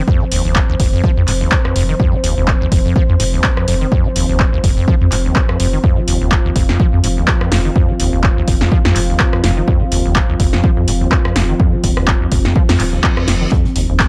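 Trippy and gritty, this acid house excerpt moves at 125 BPM in 4/4 with a light swing on the sixteenths, built on an F5 chord. A squelchy, resonant sawtooth acid bass riff with overdrive, analog chorus and tape echo rides over a deep, round triangle-and-sine bass, while a moody, detuned sawtooth pad holds sustained chords, both pumping against the up-front, tape-warm electronic kick. A punchy analog drum machine supplies handclaps, hi-hat, rim click and snare with a short room, and near the close a reverse cymbal enters at 12.9 seconds before a loose, filtered acoustic kit with hi-hat and snare slips in underneath at 13.5 seconds, all dry and carrying a cassette-tape grain.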